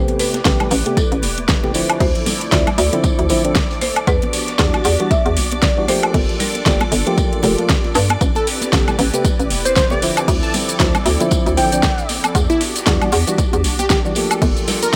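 Deep house with a deep, late-night mood and a swung sixteenth feel, built on a punchy overdriven electronic kick, a fat-snared, metallic-hatted drum kit up front, bright damped congas, a muffled lo-fi vintage kit and a bouncy, hollow FM bass with tube saturation under pumping sidechained chords. A dark, nasal organ stab with tape echo plays alongside a soft, flute-like pad and a silky string machine in the background as the harmony cycles through Am9, Dm9, Em9 and Gm9. A woody, buzzing marimba with delay carries the melody until 7.1 seconds, and a catchy, detuned unison sawtooth lead with vibrato and digital delay takes over from 8.4 seconds.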